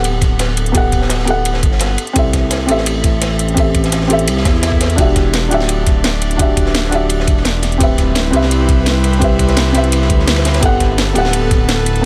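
A straight, rolling 170 BPM liquid drum and bass groove, layered from a gritty, thumpy electronic kick, an electronic kit with a cracking snare and metallic hats, and a dark, saturated breakbeat kit with ride and a medium-tuned snare, carries a dreamy fragment in which a soft, felt-muted upright piano with audible action noise and tape echo plays over an up-front, smooth sawtooth synth bass, while a very quiet electronic swell at 4.4 seconds ushers in an airy, breathy pad with chorus and sidechain pumping at 5.0 seconds, all moving through Gmaj9, C6, Em9 and D13sus4 in light reverb.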